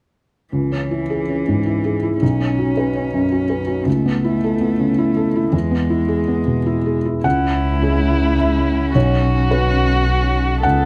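A felt-muted upright piano and a bowed cello open the recording together at 0.5 s, the piano soft, mellow and intimate up front while the single cello sings a smooth, vibrato-rich second line. This is melancholic, reflective neoclassical music for piano and strings, moving in a rubato 3/4 at around 107 BPM, with harmony that drifts through C#m, Bsus2, Aadd9/C# and E. At 7.3 s a single violin enters with the melody, sounding distant yet even, its tone lush with vibrato, while a bowed double bass joins up front with expressive portamento in its low register. The close, detailed microphones and very dry room capture the string textures and the hushed piano in fine detail. The passage is cut from a longer piece, ending at 10.9 s on the return of Bsus2.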